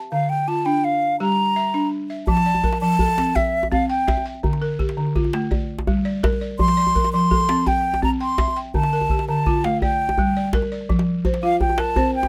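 An airy, vibrato-laden wooden flute carries the joyful, flowing melody up front in this West African string and xylophone music at 111 BPM in a straight 12/8, over a dry, buzzing balafon struck with rubber mallets spinning arpeggios through a cycling Dm–Gm–F–C progression, with a tight, cracking djembe played by soft hands entering at 2.3 seconds and the flute taking a solo from 10.9 seconds in a close, detailed recording cut from a longer piece.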